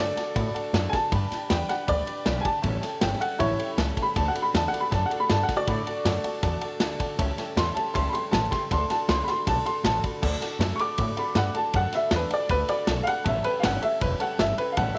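A clear, slightly detuned upright piano leads this upbeat, rowdy rockabilly excerpt, its worn, woody tone sitting up front with short sustain as it takes a solo over the first 10.2 seconds, ranging from E4 to D6. Behind it, a jangly honky-tonk upright piano adds accompaniment high in the register, while a dark, full-bodied picked steel-string acoustic guitar fills in from the background. A thumpy upright bass with gut strings plays pizzicato lines down to E1, and a vintage drum kit with a tight kick, medium-tuned snare, ride and crash cymbals sits forward with a rolled-off top. The tune drives along at 158 BPM in straight 4/4 in D major, moving through D, G and A7 changes. Light reverb and small room ambience give the whole band a close feel.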